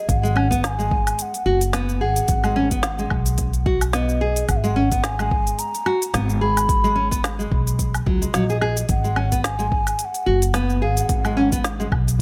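A mellow, hollow bass bansuri opens this mystical, earthy organic downtempo excerpt, its airy, tongued melody carrying vibrato and tape echo over a single G#m7 chord. Fingerpicked nylon-string guitar arpeggios, full-bodied and also touched by tape echo, sit up front beside a pizzicato upright bass whose dark, thumpy gut strings pump with sidechain compression. A deep, overdriven electronic kick, re-recorded in a small room, anchors a swung groove of woody snare, crisp hi-hats, shaker and woodblock, set in light reverb and small room ambience.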